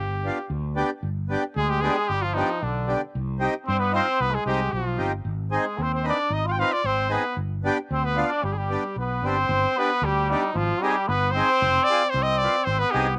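A straight 2/4 pulse at 113 BPM drives this bittersweet yet festive klezmer piece in G phrygian dominant, cut from a longer performance. A clear cornet carries the melody up front with a soft attack and classical poise, while a fretless electric bass sits close beside it with a bright, amped, growly and punchy tone. The accordion fills out the accompaniment with a reedy, full, rich and dark sound that stays smooth. At 1.6 s a trombone with a metal mute enters on a second line, its buzzy, thin, brilliant tone carrying light vibrato and sounding distant. The harmony moves through G, C minor and A-flat before a new section arrives at 9.5 s, shifting between A-flat and F minor, all captured in a dry outdoor recording.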